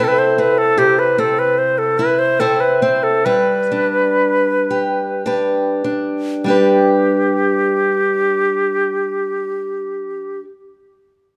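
A close, reedy wooden flute carries the melody up front, its airy tone shaded with vibrato and tongued notes, in this wistful, pastoral Celtic slow air in a free-flowing triple metre. Beneath it, an old ladder-braced acoustic guitar is picked with a boxy character and audible finger squeak, moving from Am/C through C to G under light reverb. The playing slows between 0.8 and 6.5 seconds before the second section begins, and the passage is cut from a longer piece.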